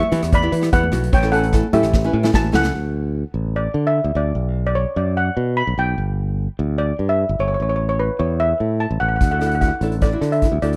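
A straight 4/4 calypso groove at 148 BPM in D major opens this carefree, sunny excerpt. The boomy kick, hi-hat, rim click and snare of a polished street-band drum kit sit up front alongside very quiet, high-tuned congas and a small, fingerpicked nylon-string guitar. A drum fill at 1.9 s leads into a stretch where the kit and guitar drop out at 2.7 s, leaving the shimmering lead steel pan, struck with hard rubber sticks, to carry a dark, smooth melody over a growly, punchy fingered electric bass until the kit returns at 9.2 s and the guitar at 9.3 s. The whole excerpt has the dry, close feel of a 1970s studio.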